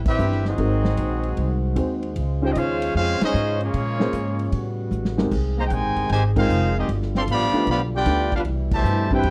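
Swinging and brassy, this big band swing excerpt is led by a tight trumpet section carrying the melody up front with vibrato and a slapback echo, while a bright trombone section plays a second line and a clear, close-miked trombone section holds soft-edged sustained chords in the background. Woody pizzicato upright bass thumps underneath, a warm upright piano with short sustain supplies accompaniment, and a dark vintage drum kit with punchy kick and rolled-off top drives the swing, adding a fill at 4.9 s amid band accents at 3.1 and 6.3 s. The dry, close 1970s-style studio sound gives the ensemble an intimate, immediate presence.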